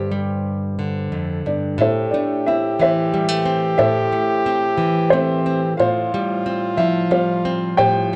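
A dark, woody upright piano carries the melody in this short, reflective and intimate acoustic folk-pop ballad, moving at 90 BPM in 3/4 in A minor and cut from a longer piece. A bright, fingerpicked nylon-string guitar sits up front in accompaniment from the start, and at 1.8 s a close-miked French horn with a straight mute enters with a nasal, brilliant second line in a classical style. The harmony moves from Gsus4 to Am and then to Fadd9/A at 5.8 s, all set in moderate echo chamber reverb.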